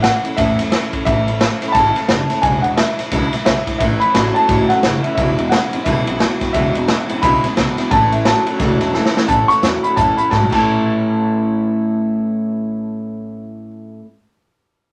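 A moderate studio reverb gives this short, rowdy rockabilly cut a retro glow, with a woody upright piano carrying the swung melody over a bright, full-bodied steel-string acoustic guitar picking up front. A thumpy gut-string upright bass played pizzicato and a punchy vintage drum kit with dark cymbals drive the chords. A twangy, slightly broken-up electric guitar riff enters at 3.8 seconds, and the drums play a fill at 8.9 seconds before dropping out at 10.6 seconds.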